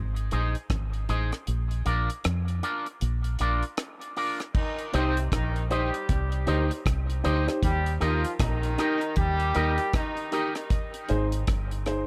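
Dub reggae excerpt, heavy and meditative, in which a round, foam-muted fingered electric bass and a dry drum kit with a punchy kick, hi-hat, rim click and crash open as a break with the kick muted from 1.5 to 4.5 seconds, joined by a twangy, scooped envelope-filtered electric guitar with lush chorus and tape echo, before a tight, lightly vibratoed horn section enters at 4.5 seconds and a mellow, vintage baby grand piano adds echoing stabs at 4.9 seconds over a light studio ambience.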